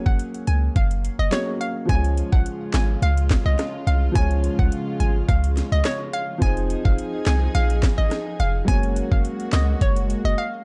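Dancehall at 106 BPM in Db major, this short excerpt from a longer piece feels bouncy and summery, with a straight 4/4 pulse and a dark, warm digital ambience. An electronic island pop drum kit sits up front, its knocking kick, sharp snare, metallic hi-hats, rim clicks and handclaps carrying the air of a large room. Beneath it, a deep, boomy 808-style bass with a sine tone, a noise layer and a fast, decaying attack holds the low end, also up front. A hollow, detuned square-wave pluck with a bright filter snap and chorus carries the melody in a high register, while a clear, slightly boxy baby grand piano supplies the accompaniment. From 1.9 seconds a dark studio string section joins with soft-attack bowed chords, light vibrato and an intimate sul tasto tone, pumping with sidechain, as the harmony moves from Gbadd9 through Db and Fm7 back to Gbadd9 before a break at 10.4 seconds.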